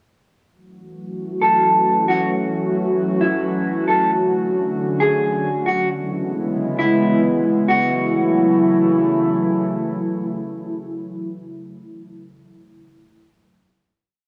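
This short, complete piece of atmospheric cloud-rap drifts in free time in F# minor, with a hazy, melancholic mood. A warbly, tape-like pad enters at 1.0 seconds and holds sustained chords. Its detuned, nostalgic lo-fi tone has a slow attack and long release, softened by chorus and its own reverb. A dark, clean electric guitar sits up front with a sparse, fingered melody that repeats like a sampled loop, coloured by subtle chorus, a low-pass filter and analog delay until it stops at 9.0 seconds. The harmony moves from F#m7 through Dmaj7 and C#m7, then settles back on F#m7 for the final chord at 7.7 seconds, which the pad sustains to the end. The gritty hardware recording is bathed in a lush hall reverb, giving the brief breakdown a dreamy, faded glow.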